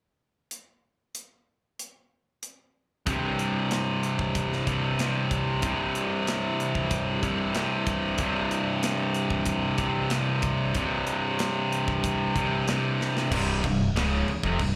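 Heavy metal at 94 BPM in C major, aggressive and heavy, opening with a tight drum kit alone at 0.5 seconds, its tight kick, medium-tuned snare, hi-hat and crash rolled off up top, before two bright, distorted, picked guitars with slapback echo crash in with a low riff at 3.1 seconds over a very quiet, hollow, flute-like pad of slow-attack sustained chords. After a drum fill, a growling, punchy, overdriven fingered bass joins at 13.3 seconds as the harmony shifts from C to a C5 power chord. Light club reverb gives the sound the feel of a live gig heard through the venue's PA, and the recording is cut from a longer piece.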